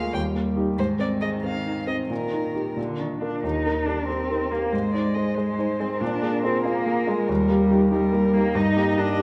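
Restless and urgent, this fragment of a quick classical-period piano trio movement in a rubato 6/8 pairs a veiled, con sordino violin melody, sung with vibrato and portamento, with a dark, soft-edged muted cello second line beneath, while a clear, intimate grand piano, its action noise audible, carries the accompaniment up front, all three playing throughout in a reverberant recital hall as the opening phrase gives way to a new section at 3.4 seconds.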